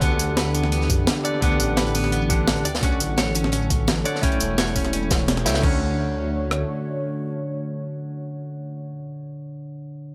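An echo-heavy mix with light digital ambience frames this uplifting liquid drum and bass excerpt, where a bright, bell-like, barky tine electric piano sits up front with analog delay over a smooth, warbling analog pad that pumps under sidechain and chorus. A clean, picked electric guitar with vintage 12-bit sampler grit and dub echo plays arpeggios, while a deep, rumbling detuned saw bass and three drum kits carry the drop: a pitched-up, compressed kit with thumpy kick and rim click, a second with dub-echoed snare, hi-hat, tambourine and crash, and a crunchy, saturated acoustic kit in the background. After a band accent at 5.3 seconds, the drums, guitar and bass drop out by 6.6 seconds, leaving the electric piano and pad over a Dmaj7 chord.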